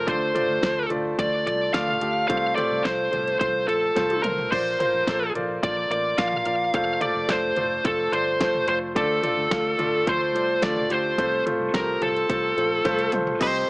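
Earnest and bittersweet, this piano-driven pop excerpt moves in a straight 4/4 over a chord cycle that begins on Dm and passes through F/C, Bb and F. A fuzz lead guitar carries the melody from the first moment, its picked, compressed distortion sitting up front in the mix. Beneath it, a grand piano with a polished, present tone and short sustain supplies the accompaniment, trailed by dub echo. A vintage muted fingered electric bass adds a dark, round, foam-muted low end. A produced, layered pop drum kit with a punchy kick, fat snare and metallic hats comes in at 0.1 seconds, also touched by dub echo, and plays fills around 4.0 and 12.9 seconds. Light reverb and an echo-heavy mix give the whole piece a small-speaker character.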